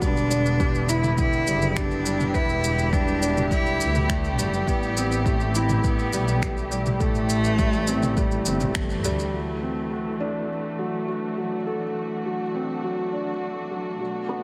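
A rich, focused solo cello with tape echo sings a moving, melancholic melody over felt-muted upright piano, whose soft, mellow riff also carries tape echo, and dark, veiled con sordino strings holding sustained chords in this piano-and-strings electronica cut from a longer piece. Beneath them, a bowed double bass section with portamento pumps against a deep, tape-toned electronic kick, while a layered deep house kit adds filtered finger snaps, shaker and toms, all within a small, lightly reverberant room. The cello falls away at 8.7 seconds, and after a band accent at 8.8 seconds the bass and drums drop out by 9.3 seconds, leaving the piano and muted strings to linger on a D7 chord until 14.4 seconds.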